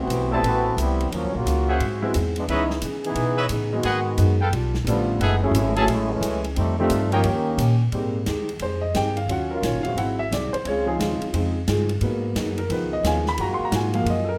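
A clear trombone section with light vibrato solos through the first 7.9 seconds of this joyful, brassy big band swing excerpt at 176 BPM, backed by warm trumpet stabs, a woody pizzicato upright bass up front, a picked jumbo steel-string acoustic guitar with finger squeak in the background, an airy, polished drum kit on hi-hat, ride cymbal and snare, and an intimate grand piano with audible action noise that takes the solo at 7.9 seconds as the music settles into Ab major over mellow sustained trombone chords in light reverb.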